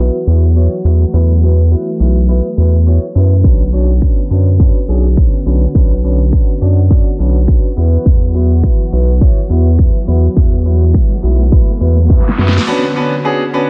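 Dance-pop at 104 BPM with a bittersweet yet confident mood, this excerpt opens on a warm concert grand piano and a smooth, detuned sawtooth pad with chorus that sits in the background. Both pump under sidechain alongside a round, deep analog bass that sits up front, moving between Esus2 and Bmadd9 under a filter sweep. A punchy, layered electronic kit with finger snaps, hi-hat and a fat, soft-clipped snare joins at 3.4 s, and a very quiet riser enters at 9.4 s before a drum fill at 12.1 s, all within a dry, dense and heavily limited modern master.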